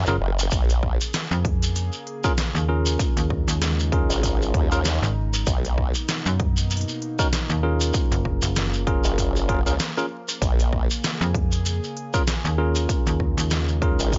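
A dry mix with a dark, dulled top end carries this gritty, funky glitch hop fragment, swung on the sixteenths, with a chorused, overdriven formant-swept wobble bass up front beside a snappy, metallic FM slap bass and a punchy, layered electronic kick that enters at 0.5 seconds. A dubstep kit of crisp hats, rim click and deep snare, together with a grainy, vintage-sounding shekere, fills out the groove, while a clean tine electric piano plays stabs through a combo amp with tape echo and sidechain pumping. From 1.0 seconds a warbling, nostalgic lo-fi pad holds mellow sustained chords in the background as the harmony cycles through Gbmaj7, Bbm7, Eb7sus4 and Bmaj7.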